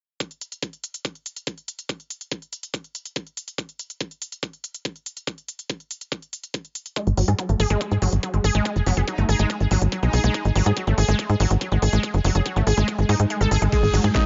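A straight 4/4 pulse at 142 BPM drives this hypnotic psychedelic trance excerpt in G# phrygian, built on a knocking, overdriven electronic kick up front and a layered techno kit with a cracking snare, smooth hi-hats and crash cymbal. At 7.0 seconds a lush, detuned unison pluck riff arrives with sidechain pumping and digital delay, joined by a tight, nasal sequencer bass, while a metallic, chorused wobble bass surfaces briefly in the background. The kick drops out just before 13.7 seconds under a very quiet electronic swell, and then a screaming, gritty synth lead, an evolving phaser-washed wavetable pad and a grainy egg shaker enter, all set in a digital ambience.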